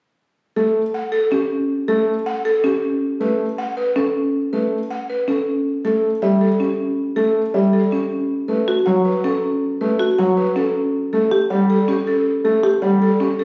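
A buzzing, woody marimba played with medium hard mallets carries the melody in this hypnotic, bright, minimalist classical pattern piece in 7/8, cut from a longer work; a second marimba with padauk bars and a full, close-miked, dry tone adds arpeggios from 1.3 s, while a dark, mellow baby grand piano with long sustain plays an accompaniment as the harmony moves from A through Gsus2 and F#madd11 back to A, and the ensemble sounds in a moderate recital hall, captured on a phone in the room with added studio reverb and compression.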